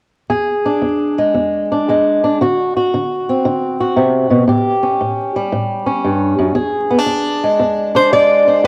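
Laid-back and swaggering, this excerpt of acoustic country blues swings at 115 BPM in 4/4, with an up-front, boxy fingerpicked acoustic guitar on fresh strings carrying the accompaniment through E7, D7 and A7 from 0.3 s. At 8.0 s a bright, nasal lap resonator guitar, played with slide and fingerpicks, steps forward with a brief metallic melody. Both guitars have a cassette-tape quality, and the home recording sits in a lush hall reverb with vinyl crackle.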